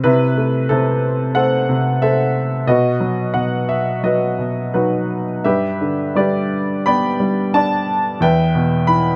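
Close, detailed microphones and a light reverb give this short classical fragment an intimate, up-front sound, cut from a longer piece. A lone upright piano carries everything, its tone clear and woody yet worn and slightly detuned, with a long sustain that lets each sonority hang in the air. The mood is moody and cool, and the lyrical playing moves in 4/4 with uneven beats and a free, rubato feel. The harmony drifts from Am/C through B at 2.7 seconds and G at 5.4 seconds before settling on Em at 8.2 seconds. The piano ranges from E2 up to B5 across the full 9.2 seconds, giving the brief passage both a low register and an upper one.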